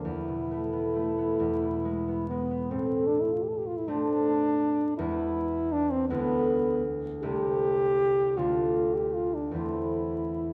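A warm French horn carries the elegiac melody up front with a light vibrato, singing in a classical style over a ringing, fingerpicked concert harp in this slow, rubato romantic duo in A minor, moving in 6/8 at roughly 44-55 BPM by the dotted quarter. After a suspended E opening, the music settles onto A minor at 2.7 s and drifts through E7 and D minor before coming to rest on A minor over E. This is a short passage cut from a longer piece, set in a moderate recital hall reverb, with a dark production and a vinyl crackle deepening its melancholy.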